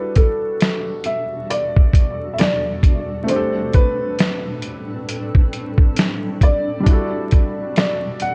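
Up front and thumpy, a compressed, muffled sampler-style drum kit with vintage 12-bit grit lays down a swung 67 BPM lo-fi hip hop groove in E minor from 0.2 seconds, beneath a dark, woody upright piano melody dulled by a low-pass filter and tape echo, a soft felt-muted upright piano accompaniment with audible action noise and cassette tape colour, and a cloudy, warbling granular pad with its own reverb that enters at 0.6 seconds over Em11 and Am11 chords, the whole nostalgic, melancholic passage dusted with vinyl crackle as a cut from a longer piece.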